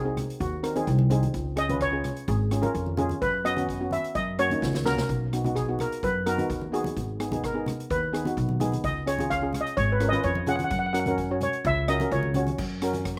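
Dry and open-air with little reverb, this festive, sunny calypso excerpt puts a mellow lead steel pan, played with soft rubber sticks and carrying a slapback echo, up front for a solo across the whole passage, beside a double-seconds pan whose vintage, band-limited shimmer fills in the chords. A woody pizzicato upright bass on steel strings anchors the harmony as it moves from G#/B# through Bmaj7 and G#m to F#. A street-band drum kit with dark cymbals and a boomy kick sits lower in the mix and adds a short fill at 4.6 seconds, while thick-skinned, low-tuned congas stay in the background.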